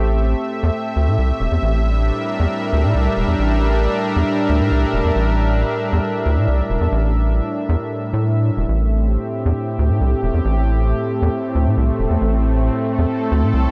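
A detuned sawtooth pad with a soft attack and a chorus sheen holds sustained chords from the very start, while a rubbery, hollow square-wave bass with a resonant filter pluck bounces beneath it in the low register. This glitchy, eerie IDM moves at 136 BPM in a straight 4/4 in A phrygian, its harmony shifting from Am7 to C7 at 1.6 seconds and back to Am7 at 8.7 seconds. Both parts sit up front in a lightly reverberant space, the dark bass slightly more prominent than the smooth pad.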